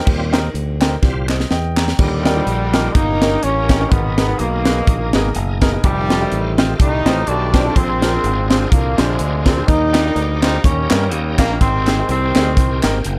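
A smooth-topped horn section with light vibrato carries the melody from 2.0 seconds in this jubilant, reverent uptempo gospel excerpt in Eb major, swinging at 125 BPM over a punchy, up-front fusion drum kit and a growly fingered electric bass. A shouting tonewheel organ with key click and a slow rotary speaker opens with a brief solo that a drum fill joins halfway through, then settles into sustained chords behind an intimate baby grand piano with audible action noise. Very quiet group handclaps appear near the start and again from 9.9 seconds, all in a dark studio reverb as the chords move from Ebmaj9 through F9 and Bb9 to Abmaj9.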